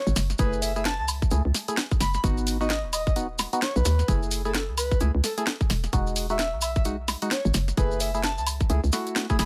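A skippy two-step garage groove swings its sixteenths, with a tight electronic kick and a garage kit of cracking snare, hi-hats and woodblock sitting up front, while grainy maracas stay in the background. A hollow, bouncy FM bass with tube saturation knocks beneath percussive organ stabs that arrive at 0.4 seconds, coloured by chorus, phaser and dub echo as the chords move through F#m9, G#m7 and Emaj7. Over this moody excerpt, a breathy, flute-like synth lead carries the melody with vibrato, chorus and dub echo in a dry mix.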